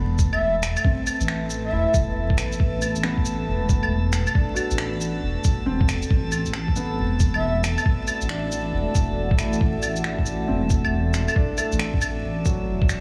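Future garage at 137 BPM in 4/4 with a 16th-note swing, this nocturnal, ghostly excerpt in A dorian rests on an Amadd9 chord, with a muffled, pitched-down kick up front alongside a tape-warm layer of electronic shaker, claves and finger snaps, and a rumbling, detuned saw bass that pumps against the sidechain. A deep, moody ambient pad and a felt-muted upright piano, soft and intimate with tape echo, both breathe with sidechain pumping, while a glassy texture of drifting overtones hangs quietly above. A breathy, flute-like synth lead with vibrato and cassette-tape coloring appears only briefly, from 0.3 to 1.9 seconds and again at 7.4 seconds, all set against vinyl crackle and a small room reverb.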